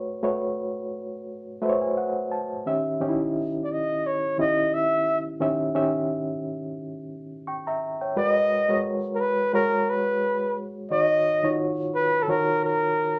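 A breathy, whispered flugelhorn carries the jazz-style melody from 3.6 seconds, its vibrato and soft attack sounding intimate and up front in this bittersweet, silky soul fragment cut from a longer piece. Beneath it, a reedy, worn reed electric piano sits slightly out of tune, lightly overdriven with medium tremolo and heard through its built-in speakers, and it plays a short fill at 1.3 seconds before the horn arrives. The band plays live in one room with a wet studio ambience, and the recording was captured on cassette tape.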